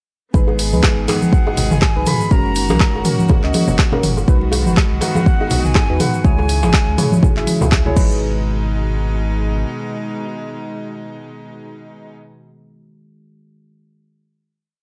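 A dry, gritty hardware sound with studio reverb frames this short, hypnotic and driving afro house piece in G# minor at 122 BPM, swung on the sixteenths. An up-front, four-on-the-floor electronic kick anchors a programmed deep house kit of dark hats, claps, rim clicks, low toms and a crash, while interlocking congas, a tight, cracking djembe and a grainy egg shaker in sixteenths sit further back. A round sine sub bass with tube saturation plays a syncopated riff, and a close-voiced, dotted-rhythm chord stab, dark and decaying with lush chorus, filter sweep and analog delay, pumps against the kick alongside a bright, earthy chamber string pad. A very quiet, woody kalimba repeats a 16-step sequence, and from 1.1 seconds an airy jazz flute with vibrato and analog delay sings short hook phrases. The chords move from G#m through F#, B and C#m before the drums drop away at about 8.2 seconds, and the sub bass lingers until about 9.6 seconds while the strings and stabs ring out the final hit until 12.2 seconds.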